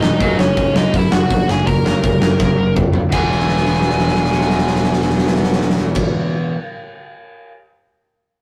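A straight 4/4 pulse at 164 BPM drives this rebellious, upbeat punk rock excerpt in E lydian, cut from a longer piece and tuned slightly flat of standard pitch. A big rock drum kit sits up front with a punchy kick, medium-tuned snare, hi-hat, crash and toms, its tone dark and smooth with a rolled-off top, and it rolls through fills from 2.4 to 3.1 seconds and again across most of the second half before ringing out alone until 7.5 seconds. Underneath, a fuzz picked electric bass growls round and punchy, while two bright guitars play picked riffs further back: a cranked stack guitar low in the range with overdrive, and a compressed, distorted electric guitar reaching higher. Over them a bluesy overdriven lead guitar carries the melody with a warm, distorted bite. The harmony moves from F# to E at 3.1 seconds, and the whole performance has the rough feel of a rehearsal room, with light reverb and warm saturation.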